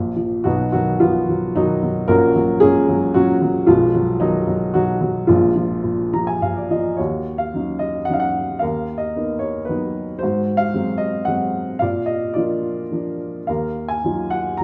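Classical solo piano in 3/4 with a rubato feel, bittersweet and moody, cut from a longer piece. A dark, woody upright piano sits up front and carries everything alone, adding a short fill at 5.8 s before the second phrase begins at 7.0 s. The instrument's boxy, mellow tone blooms into a wet recital hall reverb that suggests a church or concert hall.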